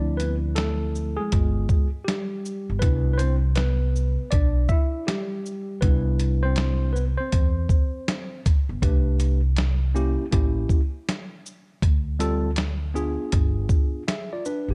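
A swung 80 BPM jazz-hop groove in 4/4 comes from a gritty, compressed sampler-style drum kit entering at 0.2 seconds, with a thumpy kick, medium-tuned snare, hi-hat and shaker sounding tape-warm and up front, while a woody pizzicato upright bass anchors the low end. A mellow, slightly out-of-tune tine electric piano takes a solo through the first 8.8 seconds, then keeps comping over cool, relaxed changes in C major such as Dm7, G7b9, Cmaj7 and A7b9. The production is dark and dry, and the passage is cut from a longer piece.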